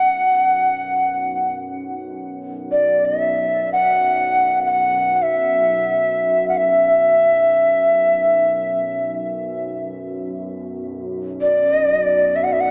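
This excerpt of free-time meditation music opens at once with a mellow, hollow Native American-style cedar flute and a deep, dark ambient pad sounding together, both carrying through the full 12.7 seconds. The flute leads with an airy, wooden straight tone and tongued notes, moving within a narrow span from D5 to F#5 in B minor pentatonic and sitting up front in the mix. Beneath it, the pad holds a low drone from B1 to F#2, its detuned sawtooth and sine layers with a sub octave given a slow attack, long release and chorus, and set far beneath the flute in level. A cathedral reverb with a 4.3-second decay wraps the sound in a haunting, spacious atmosphere, though the overall tone has the narrow quality of a small speaker. The effect is meditative and unhurried, with the flute's single line floating over the moody, sustained bed.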